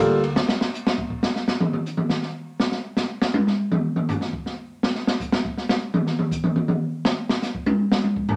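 A swinging jazz waltz at 161 BPM in 3/4, with a loose triplet lilt on the eighth notes, carries this brief, cool fragment of a longer piece. An acoustic jazz drum kit plays alone as a solo from 0.4 to 8.4 seconds, moving across hi-hat, ride cymbal, snare, toms and kick. The kit sits up front with a smooth, dark character: shadowy cymbals, a medium-tuned snare and a boomy kick, set in a small room with a moist studio reverb.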